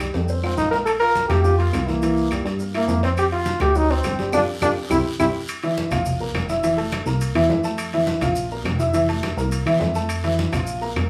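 Salsa at a brisk 208 BPM in F major, this joyful, danceable passage from a longer piece sets a worn, slightly detuned upright piano and a punchy, plucky analog bass under an up-front trombone melody with vibrato from 0.4 to 5.3 seconds, while ringing timbales, thick-skinned congas, woody claves, a raspy guiro and grainy maracas fill out the percussion bed in a live studio room, with an opening drum fill, and then a band accent and second fill leading into the second section at 5.5 seconds.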